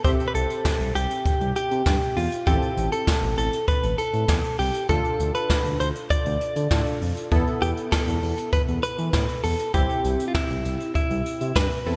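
A bright 1980s-style digital production sits in a moderate, lush hall reverb, giving this 12-second cut from a longer synth-pop piece a melancholic yet driving character at 99 BPM in a straight 4/4. A clean, compressed electric guitar, recorded direct and placed up front, carries the melody between E4 and D5 with picked notes trailed by digital delay. Beneath it, warm analog keys supply accompaniment with a round, full-bodied, detuned sawtooth tone, a filter sweep and chorus, their fast-attack notes decaying away. A smooth synth bass blends sawtooth and triangle waves with a nasal edge, ring modulation and vibrato, holding sustained, mellow notes from A1 to E3. An acoustic brush kit with a rolled-off top, distant and roomy yet up front, keeps time on hi-hat, a boomy kick and a medium-tuned snare, while the chords move from C through Am, Dm and Esus4 before returning to C at 9.7 seconds.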